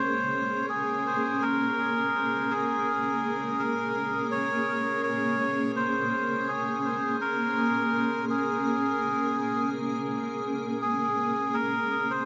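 Ambient music with a spacious, meditative mood, moving at an easy pace with a gentle swing in its subdivisions. A reedy, breathy melodica carries the melody in a narrow middle register, its plastic-case tone dark and smooth, and a dub echo trails its phrases. Beneath it, a granular cloud pad holds sustained chords, blurred and full-bodied, built from detuned sine unison voices with slow attacks, long releases and its own built-in reverb. Both parts sit up front and play together from the start at 0.0 seconds to the end at 12.3 seconds, resting on a single minor seventh chord throughout. The whole is wrapped in a huge ambient reverb with a 4.4-second decay, giving the dark, warm production a deep sense of space in this short cut from a longer piece.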